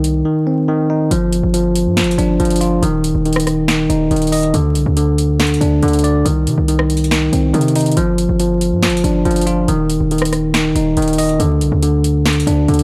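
Trap-flavored hip hop at 140 BPM in a half-time 4/4 feel, this dark, menacing clip is cut from a longer piece. A bright, bell-like tine electric piano sits clean and up front, carrying the accompaniment from D3 to Eb5 over a C minor and G5 progression that drops out to bare, chordless stretches, first at 2.8 seconds. Underneath, a hard-hitting 808-style bass with a sine body and a noise layer hits with a fast attack and decays, spanning Eb1 to C3, punchy and heavy. The electronic trap kit is overdriven, with finger snaps, a rim click, metallic hi-hats and a sharp snare. A short opening gives way at 1.1 seconds to the main passage, and the whole clip has a dry, gritty hardware character marked by transformer saturation, vinyl crackle and a digital ambience.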